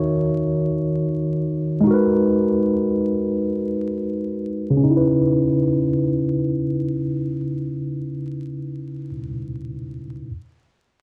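A worn, slightly out-of-tune tine electric piano plays alone and up front in this reflective, melancholic hip hop fragment in free time and C# dorian, lightly overdriven, low-pass filtered and heard as if through built-in speakers, with a filter sweep over its first 4.8 seconds as D#m7 and G#m9 give way to C#m7, all set in a wet small room with vinyl crackle.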